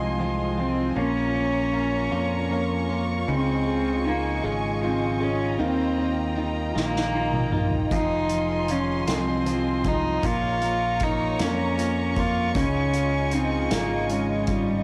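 A bowed solo cello carries the melody up front, its sul tasto tone pure and floating with a soft attack and a smooth top, touched by analog delay and the hiss-tinged colour of cassette tape. This is an aching, melancholic pop ballad in a lilting six-eight, heard as a short cut from a longer piece and moving through Fm7, Bbm, Dbadd9 and Ebadd9. A concert grand piano accompanies with an intimate, polished sound, its deep bass and long sustain joined by audible action noise, while a close studio string section holds sustained chords with vibrato. Beneath them, a clean, compressed electric guitar picks arpeggios in the background through a phaser, and a growly, punchy fingered electric bass anchors the low end. A distant, roomy soft-mallet drum kit with a punchy kick and medium-tuned snare enters at 6.8 s with a fill, adding hi-hat and toms. Light reverb and studio ambience wrap the home cassette recording in a gentle, lived-in haze.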